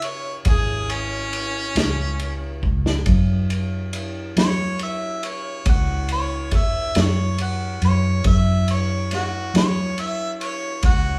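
A slow 12/8 blues at 46 BPM with a straight, mournful, soulful feel, cut from a longer piece. An overdriven harmonica carries a jazz-style solo throughout, warm with light vibrato, scooped notes and a smooth top, over a dark, round, foam-muted electric bass and a vintage acoustic kit of punchy kick, medium-tuned snare and dark ride cymbal, with a drum fill at 2.6 seconds. The chords move from C#5 to F#5 at 3.1 seconds, and the band sounds as if playing live in one small room, with a pumping ambience around the drums and a wet, large studio reverb.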